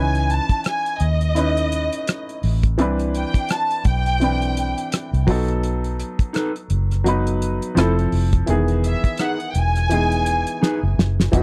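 Warm and lush, this 1970s-style soul excerpt at 84 BPM in E major, with gently swung sixteenths, sets a rich, focused chamber violin section on the melody over intimate baby grand piano with audible action noise, dark, round foam-muted electric bass and a cloth-damped, thuddy drum kit with fat snare and tight kick; a mellow, clean electric guitar riff enters at 6.3 seconds, a drum fill arrives at 10.6 seconds, and a very quiet, woody string section and barely audible, distant French horns appear only at 11.3 seconds, in a dry, close studio recording.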